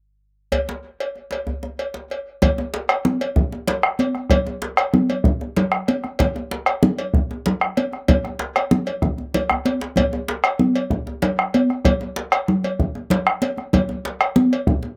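Bright, high-tuned congas with a thin-skinned tone sit up front in this powerful, festive West African traditional drum ensemble, moving at 127 BPM in a straight 12/8. The piece opens at 0.5 seconds with a metallic, compressed and saturated cowbell carrying a slapback echo, alongside a deep, warm djembe struck with hard hands. At 2.4 seconds the round, up-front bombo and the congas join, filling out the full ensemble. A drum fill breaks through around 9.2 to 10.0 seconds before the groove carries on to the close of this excerpt from a longer piece. Recorded outdoors, the sound carries light reverb and a faint mains hum beneath the acoustic drums.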